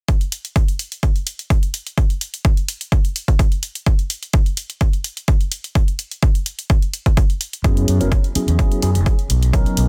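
Feel-good and sunny, this excerpt of filtered disco house opens on a punchy, overdriven electronic kick drum and a dry, gritty electronic hi-hat whose pumping gives the lightly swung groove a breathing pulse. At 7.6 seconds a warm, amped fingered electric bass joins up front, alongside a worn, slightly out-of-tune tine electric piano that shimmers through a phaser and low-pass filter, both of them pumping as the harmony moves from F#7sus4 to Bmaj9, while a very quiet, band-limited tambourine adds a faint vintage sparkle. The sound is dense and heavily limited, set in a digital ambience.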